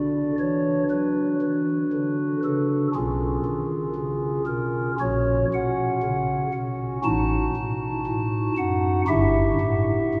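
A deep cathedral reverb with a tail of 5.9 seconds surrounds this recording, made in a church or concert hall, while the organ itself sits up front. It is a short, solemn classical passage cut from a longer piece: a chorale-style setting for solo pipe organ in B minor, moving at a slow 59 BPM in a straight 4/4, tuned to A4 = 439 Hz. The organ speaks through a stopped flute register with a hollow, mellow tone, soft in character, and each note begins with a chiff. Its baroque voicing spans from G1 in the bass up to A5. The dark harmony moves from Bm through C#7/B and F#/A#, reaches B7/A at 7.1 seconds, and settles on Em/G at 9.1 seconds before the passage breaks off at 10.2 seconds.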